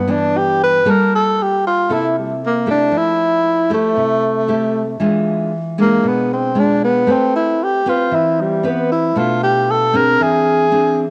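A breathy tenor saxophone carries the melody up front in this smooth, melancholic bossa nova excerpt, its mellow tone shaded by light vibrato, scooped notes and a smooth top in a jazz style, soloing from 0.0 to 11.1 seconds. Beside it, a fingerpicked nylon-string guitar provides classical-flavored acoustic accompaniment, also placed up front and playing throughout. The piece moves at 116 BPM in a straight 4/4 feel, centered in A minor. Its harmony drifts through rich extended chords, from a rootless Cmaj9 and Gm9 toward E7b9 and Am9, closing on Bm7b5 and Eaug7. A moderate spring reverb and the character of a home cassette recording give the short passage, cut from a longer piece, an intimate, worn patina.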